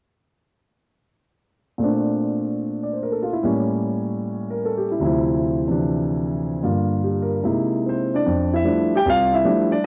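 Playful and warm, this short cut from a longer solo jazz piece features a grand piano alone from 1.8 to 9.9 s, swinging at 150 BPM in 4/4 with a loose rubato feel in F major, tuned to A4 = 443 Hz. The natural, up-front piano ranges from C2 to G5 through rich chords: Bbmaj9, A7b9, Dm9 and Gm7, then C7alt, settling on F69 as a new section begins at 8.3 s. It has a moderate studio reverb and the homely character of a cassette recording.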